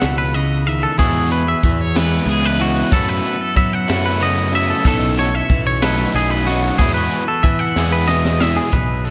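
A bright, twangy electric guitar plays intricate arpeggios up front in this wistful math rock and midwest emo piece in 6/8 at 62 BPM in E major, over a clean, softly placed electric guitar accompaniment, a round, dark fuzz bass, and a crisp, airy fusion drum kit with a high-tuned snare and punchy kick, while a crunchy, double-tracked overdriven guitar riff enters at 1.0 s and a drum fill arrives at 7.8 s, all moving through chords like Eadd9, F#m7 and Emaj9 inside a lush hall reverb that gives a big arena sound.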